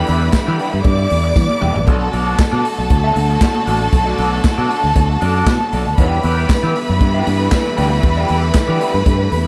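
Disco at 117 BPM with a danceable, sultry mood, cut from a longer piece, where a punchy vintage drum kit with handclaps, hi-hat, snare and toms plays a fill at 1.4 seconds over a warm, up-front fingered bass, a dark, slightly broken-up electric guitar with wah and spring reverb, a lush bowed violin section with vibrato carrying a second line, a clear, focused string section holding sustained chords through Em7 and Bm7, very quiet soft-handed congas and a jingly tambourine in the background, all in a dry, close studio sound.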